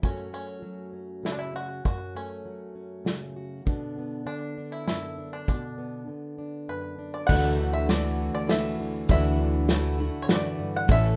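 Indie folk in a triple metre with a nostalgic, hopeful mood, this short cut from a longer piece opens with a bright, twangy bluegrass banjo melody carrying a slapback echo over a full-bodied fingerpicked jumbo acoustic guitar and an up-front acoustic drum kit with a punchy kick, played with bundle sticks. The arrangement builds at 7.3 seconds as a shimmering, octave-doubled twelve-string acoustic guitar and a dark, round hollow-body electric bass join, all in a rough home-demo mix with moderate studio reverb.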